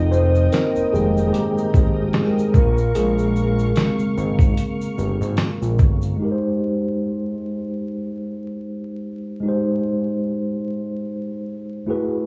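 This cosy lo-fi hip hop clip, cut from a longer piece, opens with a mellow tine electric piano taking a solo over an organ-like ensemble string pad and a fat, detuned sawtooth analog bass. A dusty, sampler-style soul drum kit joins at 0.1 s with a thumpy kick, fat snare, hi-hat and shaker, all roughened by gritty 12-bit crunch and a small-room sound. The tempo sits at an unhurried 74 BPM in 4/4 with a gentle swing on the sixteenths, in Ab major, with chords moving from Fm11 to Bbm7 and then Abmaj7. The string pad stays far behind, its vintage triangle and pulse-wave tone softened by phaser, ensemble chorus, a low-pass filter and plate reverb, while the bass brings a filter sweep and the piano sounds clean through its built-in speakers with cassette-tape colour. At 6.2 s the drums, bass and pad stop, and the electric piano carries on by itself until 12.3 s. Over all of it lies a worn, warbling old-tape character, with vinyl crackle, pitch drift and a modest studio reverb.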